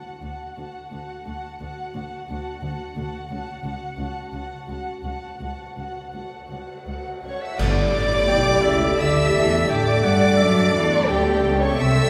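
Two violin sections open the piece together: a floating, sul tasto upper line carries the tender melody while a darker, woody second line sings with lush vibrato beneath it, joined by a shadowy viola accompaniment. A moment later, the cellos and double basses settle in with soft-attack, pure bowing that anchors this emotional, uplifting film-score passage, which moves in a flexible three-beat lilt with rubato. The harmony shifts from D to F#m/C#, and at 3.3 seconds a swell of dark cymbals, clash cymbals and concert bass drum rises behind the strings. A hollow concert flute enters in the background at 7.2 seconds, and at 7.6 seconds an accented arrival on Gsus2 brings in a distant, roomy French horn section holding sustained chords, soon followed by a classical-style solo clarinet. The entire orchestra sits inside a lingering church reverb that gives the music a spacious, cathedral-like glow, and the passage is cut from a longer piece.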